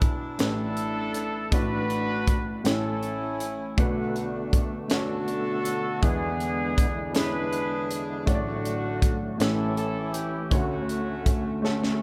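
Slow gospel in 6/8 at 53 BPM in D major, tuned slightly flat to A4 = 438 Hz, this short passage from a longer piece feels uplifting and hopeful. A mellow, tight horn section carries the melody up front, its smooth top and light vibrato giving it a jazz-style polish, with analog delay trailing each phrase. An intimate baby grand piano, warm and natural with short sustain and audible action noise, supports it throughout, also touched by analog delay, as the harmony moves from A9sus4 through Bm7 and E7 to a closing Dmaj7. A crisp fusion drum kit of hi-hat, kick and snare sits up front in a small, pumping room, with a punchy kick and a high-tuned snare, and it closes on a drum fill at 11.6 seconds. A fat, lightly overdriven tonewheel organ enters at 3.8 seconds with sustained chords, its key click, third-harmonic percussion, chorus vibrato and slow rotary speaker adding depth to the arrangement. 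Light reverb rounds out an echo-heavy mix.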